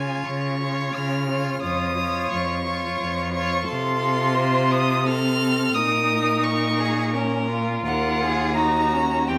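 A single bowed violin carries the melody high above the ensemble, its rich, vibrato-laden tone smooth yet set back at a distance. This short excerpt from a slow romantic movement for string quartet unfolds in 3/4 with uneven, rubato beats, giving it a solemn, elegiac cast. Beneath it, a second violin sings a quieter inner line with soft attacks, expressive phrasing and portamento, while a distant viola supplies an even accompaniment. The cello sits up front with a clear, focused tone and vibrato, anchoring the bass. All four players sound together from 0.0 to 9.4 seconds, moving through Db, Db/F, F/C, Bbm and Ebm7, and a moderate recital hall reverb lends the quartet a natural sense of space.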